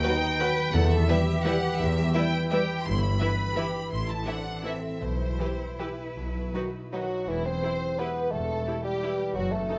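This dark, sweeping classical passage in triple time, taken from a longer piece, opens with a full ensemble: a rich violin section carries a smooth, even melody with vibrato, a lush second violin line sits beneath it, a viola section fills in from the background, and cellos play expressive bass lines with soft attacks and portamento. Mellow French horns hold distant, roomy chords in the background, while a concert harp rings out fingerpicked arpeggios. At 0.7 seconds the harmony settles from a B7 chord onto E minor as a double bass section adds a focused low foundation and round, soft-malleted timpani sound very quietly. The rubato phrasing moves through E minor, A minor and B major before returning home, and at 6.9 seconds a solo bassoon steps up front with a close, lightly vibrato-tinged accompanying line, just before the horns fall away at 7.1 seconds. A moderate stone room reverb gives the strings and horns a sense of space.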